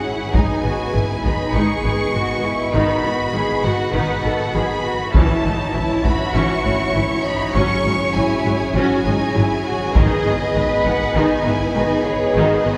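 A straight 4/4 pulse at 100 BPM drives this cinematic, epic orchestral cue in G# phrygian, heroic and relentless in mood and cut from a longer piece. A taiko ensemble strikes with heavy sticks in three short bursts, at 0.3, 5.1 and 10.0 seconds, its acoustic thump carrying a small-room character. Two violin sections play from the start: one carries the melody between C#5 and C#6 with smooth, even vibrato, while the other sings a close, expressive second line beneath it with a lush sheen. Cellos take the bass line with rich bowing, joined just after the opening by double basses holding a low G#1 and by violas filling the accompaniment in the background. A dark French horn section sustains soft-attack chords from a distance as the harmony moves through G#m, B/G#, A/G# and C#sus4/G# before returning to G#m. The ensemble sits in a cathedral-like reverb with a 6.5-second decay, as if recorded in a church or concert hall.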